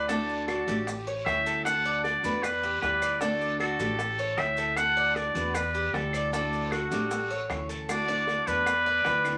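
Cuban son in a guajira vein at 154 BPM in D major, this relaxed, warm excerpt from a longer piece cycles through D, A7 and Em7 under a nasal, up-front trumpet with a straight mute carrying the melody, while a breathy, chiffy metal flute sits in the background with a second line. A metallic, double-strung tres plays bright arpeggios over boxy picked steel-string acoustic guitar and a thumpy, dark pizzicato upright bass on gut strings. Tight high-tuned bongos, raspy guiro and grainy maracas enter at 0.1 seconds and woody claves at 0.5 seconds, all set in moderate studio reverb with vinyl crackle.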